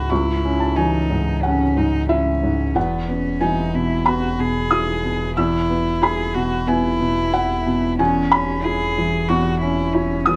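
The rhythm moves in a rubato 4/4 around 92 BPM, giving this reflective, longing neoclassical piano-and-strings fragment a breathing, unhurried feel in C# minor, tuned to A4 = 445 Hz. A felt-muted upright piano carries the accompaniment across its full range, mellow and boxy with short sustain and audible action noise that makes it feel close and intimate. Alongside it, a single bowed cello plays a second line from B3 to G#4, warm and airy with a soft attack, light vibrato and a sul tasto tone, sitting up front beside the piano. Underneath, a deep sine sub bass doubled at the octave holds full, sustained low notes. The harmony rests on C#m, opens to Eadd9 at 2.8 seconds and settles onto C#m/E at 8.0 seconds, all within a light reverb across the 10.4-second cut from a longer piece.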